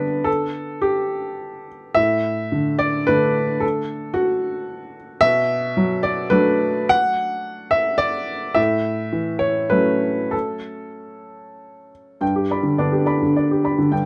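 Peaceful and tender, this short neoclassical minimalist piano piece moves in a rubato 3/4 at roughly 93-114 BPM, with a solo upright piano carrying the whole 14.1 seconds across a range from G2 to B5. The piano's woody, vintage tone has a short sustain and sits up front, captured by close, detailed microphones with little reverb. Its chords drift from G through Dsus2/A, Bm7 and A6 before returning to G at 12.2 seconds as a new section opens, and the fragment is cut from a longer work.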